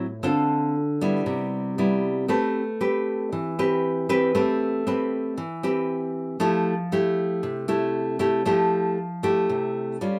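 Bossa nova for solo nylon-string guitar, sophisticated and romantic in mood, heard in a short excerpt cut from a longer piece. The warm, fingerpicked classical guitar sits up front, captured with close, detailed microphones and light reverb, moving through lush chords such as Cmaj7, Am9 and Fmaj9. It spans a range from A2 to B4, with a new section arriving at 2.3 seconds.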